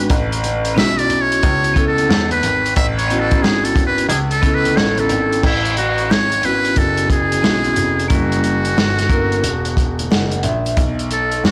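Jazz-hop at 90 BPM in A major with a smooth, cool, swung feel, in which a buzzy, metal-muted trumpet with vibrato solos up front over ringing hard-mallet vibraphone with slow motor vibrato, a clear, worn grand piano holding the deep bass line with transformer saturation, a gritty, saturated breakbeat kit with dark cymbals and a tight kick, and very quiet egg shaker and congas, the trumpet treated with tape echo and the vibraphone adding a fill at 9.8 seconds, all in a blown-out, overdriven recording with vinyl crackle and light studio reverb.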